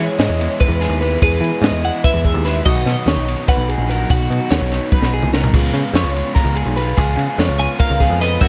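Skipping along in 7/8 at 292 BPM counted in eighths with a straight feel, this bright, playful math rock and midwest emo excerpt sets a warm twelve-string electric guitar melody, colored by analog chorus and slapback echo and resting briefly before returning at 7.6 seconds, over a second twelve-string guitar's bright, twangy arpeggios, a dark, double-tracked overdriven guitar riff, a growly, up-front picked bass and a dry, punchy compact cocktail drum kit with dark cymbals and a high-tuned snare that plays a fill at 4.9 seconds, while a barely audible fingered clean guitar accompanies only through 1.2 seconds, all moving from Emaj7 to Bmaj7 to C#7 in a light, small-room ambience.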